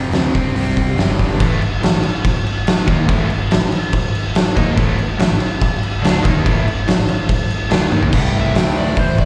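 A dark, oversized low-tuned drum kit dominates this brooding, heavy blues rock power-trio excerpt with a southern rock edge, its fat snare and punchy kick sitting up front with a saturated, gritty character and a rolled-off top in a bright stone room. Set at 143 BPM in 4/4 with a straight feel in A minor, the cut is built on an overdriven, double-tracked electric guitar riff carrying slapback echo. Beneath it, a growly fuzz fingered electric bass adds overdrive to the low end. A smooth overdriven lead guitar with slapback echo appears briefly at the start and returns for a short solo from 8.1 seconds, just after a drum fill at 7.9 seconds. The performance sounds like a live gig heard through the venue's PA, with light reverb and the ambience of a recital hall.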